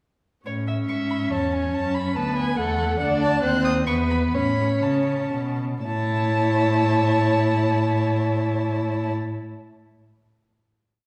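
In a lilting three-beat metre with a flexible, rubato pulse, this brief, complete classical-period movement for string quartet sounds graceful and lively. A dark-toned first violin carries the melody high above the ensemble, its vibrato and portamento giving the line an expressive, smooth-topped character. A second violin enters at 0.9 seconds with a woody counter-melody and sustained chords. The viola fills the middle with even, independent inner lines and held harmonies, while the cello, close and up front, plays a walking bass with vibrato and portamento and sustains its low notes. The pace slows from 2.4 seconds, and the movement settles onto a long final chord from 5.8 seconds. The quartet is heard from further back in a reverberant recital hall, which wraps the dark-toned bowed strings in an airy halo.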